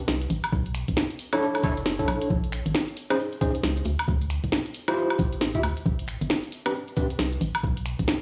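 A dry, gritty hardware recording with transformer saturation and light studio reverb frames this moody, soulful two-step UK garage excerpt, where a barely audible sub drop opens the first 0.5 seconds, a hollow, dark, organ-like FM bass pumps with sidechain alongside a thumpy, pitched-down, tape-warm kick, a layered electronic kit puts cracking snare, finger snaps, hi-hat and woodblock up front, a grainy acoustic cabasa sits in the room, and a worn, slightly out-of-tune tine electric piano, lightly overdriven with tape echo, plays stabs from 1.3 seconds.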